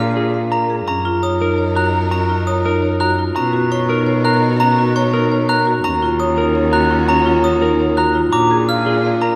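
Hypnotic and bright, this minimalist classical pattern piece in F# major pulses in 7/8 at 338 BPM counted in eighths, with a straight feel and tuning set slightly low at A4 = 437 Hz. A marimba played with medium hard mallets carries warm, mid-register arpeggios, while a glockenspiel struck with brass mallets rings out sparkling, bell-like arpeggios high above it. Beneath them, a solo bowed cello holds the bass up front with a smooth, even tone and vibrato, and a chamber string ensemble sustains focused chords in the background. At 0.2 s a clean, picked electric guitar enters with a dark, scooped melody. The harmony moves from A#7 to F#6, then through Bmaj7 and D#m7 before returning to A#7, and the whole passage, cut from a longer piece, sits in the generous wash of a scoring stage reverb with a 2.0 s decay.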